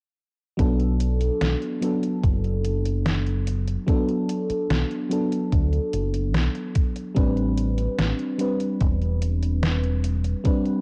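Nostalgic and hazy, this vaporwave fragment drifts at 73 BPM in a straight 4/4, cut from a longer piece. A mellow FM electric piano carries the chords, moving from Bm7 to Am11 at 7.2 seconds, its soft, full-bodied tone touched with a faint noise layer, subtle chorus and tape echo. Beneath it, a deep dub fingered electric bass sits up front with a dark, round, amped sound in a low register. The rhythm comes from a thumpy electronic kick with a tape-warm character, paired with a detuned 8-bit drum machine supplying hi-hat and an overdriven, medium-tuned snare, both kits carrying studio reverb and cassette grit. Everything begins together at 0.6 seconds, and the whole passage has the light reverb and digital ambience of a home cassette recording.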